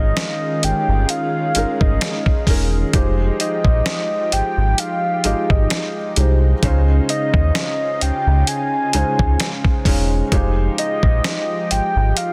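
A gritty, thumpy sampler-style drum kit with a fat snare arrives at 0.2 s over a slow 65 BPM swung 4/4 groove in F minor, anchoring a longing, late-night contemporary R&B passage where a deep, sine-like sub bass with octave sits up front, a felt-muted upright piano with audible action noise plays intimate accompaniment, a thick, warbling vintage unison pad with chorus sustains chords from Eb9sus4 through Fm9 and Dbmaj9, and a round, dark octave-layered synth lead with vibrato, chorus and tape echo carries the melody in a dense, heavily limited modern master.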